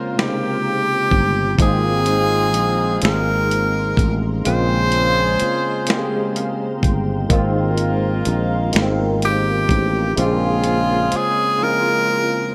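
A breathy, punchy tenor saxophone with light vibrato carries the melody up front through a digital delay in this sultry, late-night slow six-eight R&B excerpt, over a barky, lightly overdriven tine electric piano with ensemble chorus that steps forward with a fill at 5.9 seconds. A dusty, gritty sampler-style drum kit with a thumpy kick and a growly fretless bass entering at 1.1 seconds anchor the groove. Behind them sit a smooth-topped jazz horn section playing loose octave-doubled stabs and a very quiet, hollow, warbling pad, all bathed in plate reverb with a bright 1980s-style digital sheen.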